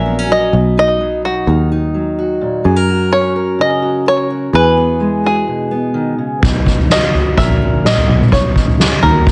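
A twangy banjo melody with slapback echo opens over bright fingerpicked steel-string acoustic guitar and a round, dark picked electric bass in this hopeful, uplifting indie folk passage, cut from a longer piece, before a soft-mallet drum kit with a punchy kick, snare and toms joins at 6.4 s to build the arrangement in a small room with light reverb.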